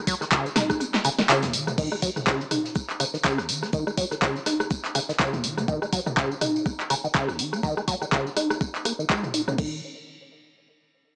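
Trippy and hypnotic, this swung acid house cut opens on a drop in which the thumpy, overdriven sampler-style kick falls away from 0.8 to 1.8 seconds, while a rubbery, resonant sawtooth acid bass riff with filter sweeps, subtle chorus, sidechain pumping and tape echo sits up front. A punchy, tape-warm analog drum machine carries crash, handclaps, hi-hat, rim click, snare, tambourine and toms, its snare, clap and hats given a short room sound. A very quiet acoustic jazz kit played with brushes adds hi-hat and a medium-tuned snare until 5.7 seconds, all within a dry, gritty, small-speaker sound with light reverb.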